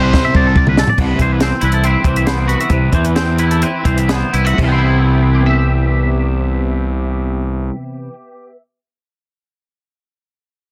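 A twangy, clean electric guitar spins phaser-tinged arpeggios in a high register through this wistful, intricate fragment of math rock and midwest emo, cut from a longer piece. Beneath it, a fuzzy, round fingered bass sits up front with overdrive, while a small, dark-sounding cocktail drum kit with a high-tuned snare and punchy kick opens on a fill and plays until 4.7 seconds. The opening moment also brings a brief flash of brilliant solo trumpet with vibrato, scooped notes and tape echo, alongside an overdriven, double-tracked riff from a cranked stack guitar; both are gone within the first second. From 1.0 seconds, a second bright, picked electric guitar adds chorus-washed accompaniment as the harmony moves from Cmaj9 to Cmaj7 and the pace slows. The sound is dry, with a dense, heavily limited modern master.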